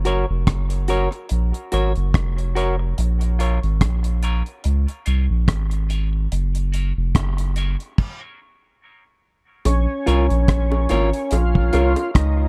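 Dub reggae with a deep, heavy mood, this clip cut from a longer piece rides a round, soft sub bass and a dry, tight-kicked drum kit of kick, hi-hat, rim click and crash, while a dark, clean semi-hollow guitar drifts warbly through dub echo and a filter sweep, everything halting in a stop at 8.0 seconds before a gritty, overdriven tonewheel organ with slow rotary swirl and key click takes the melody at 9.7 seconds alongside high-tuned, echoed bongos in the background, all in a dark small-room sound.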